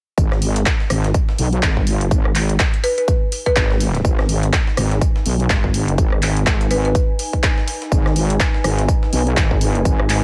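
A heavy, saturated wobble bass with sidechain pumping drives this aggressive, gritty bass house excerpt at 124 BPM in G# minor, riding a punchy, up-front electronic kick, a layered big-room dance kit of handclaps, hi-hat and rim click, and a pitched-up, tape-toned breakbeat sampler kit of hi-hat, snare and tambourine in the background, while a warbly, nostalgic lo-fi pad fades in from 0.9 s and a dry, buzzing marimba struck with hard mallets sounds a delayed B4 between 2.8 and 6.9 s.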